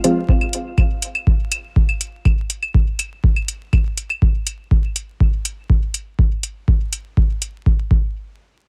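Metallic, overdriven electronic hi-hats open this nocturnal, meditative dub techno excerpt at 122 BPM in a straight 4/4, and a deep analog kick drum joins at 0.3 seconds. Both the kick and the hats sit up front, their gritty overdrive carrying the boxy character of being re-recorded in a small room. Layered electronic claves enter at 0.4 seconds at a lower level, overdriven as well, pumping against a sidechain and trailing a dub echo before they fall away at 4.2 seconds. From there the kick and hats carry on alone, the hats stopping at 7.5 seconds while the kick continues a little longer. The space is dry, with little reverb, and a layer of vinyl crackle runs underneath, lending the short cut from a longer piece a worn, late-night feel.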